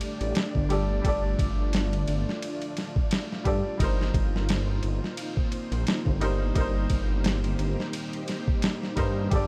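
A dark, detuned sawtooth bass sits up front from 0.2 seconds, its saturated unison voices rumbling and beating low beneath this dark, smoky trip hop excerpt. A gritty, pitched-down boom bap kit drives the 87 BPM groove with a thumpy kick, a medium-tuned snare and ride cymbal, compressed and tape-soaked in a small room, with a lazy swing on the sixteenths. An upright piano plays woody, slightly detuned accompaniment with short sustain, colored by harmonic tremolo and tape echo. Alongside it, a vintage string machine set to cellos holds full, mellow chords with a slow attack, a sub octave and ensemble chorus. The harmony rests on Gsus2 before shifting to F7sus4 over G at 3.8 seconds, and the mix stays dry and intimate with a warm, shadowy production.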